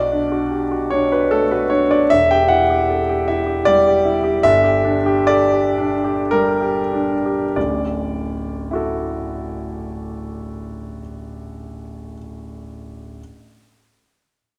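A clear, intimate grand piano opens this serene, luminous impressionist solo in D major, moving in a rubato 3/4 at 44-79 BPM and slowing down from 0.9 to 7.6 seconds over Bm7, Em7 and Gm6 harmonies that span deep bass to the upper middle register. At 7.6 seconds the music settles into a new passage on a Dadd9 chord. The up-front, natural piano carries audible action noise and sits in a wet recital hall reverb, in this short excerpt cut from a longer piece.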